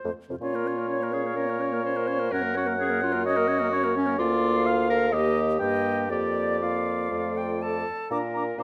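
Urgent and restless, this quick classical-period passage for wind quintet, cut from a longer piece, moves with a rubato feel, its harmony opening on Bb minor and Gb before turning at 4.2 s toward a closing Bb chord at 8.1 s. An airy, expressive concert flute carries the melody with vibrato over a mellow oboe second line, while a bright, smooth-topped clarinet entering at 0.4 s and a soft-attacked French horn fill in the accompaniment, and a warm, up-front bassoon anchors the bass. Close, detailed microphones and light reverb keep the ensemble intimate.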